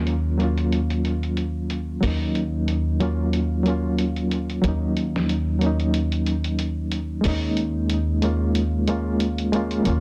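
A barky, reedy electric piano with medium tremolo and tape echo sits up front beside a woody, thumpy pizzicato upright bass, while a gritty, low-pass-filtered sampler-style kit of hi-hat and snare adds a lightly swung pulse to this brooding, melancholic trip hop excerpt at 92 BPM in Eb minor, which moves from Ebm7 to Bbm7/Eb at 7.3 seconds under light digital reverb and a dense, heavily limited modern master.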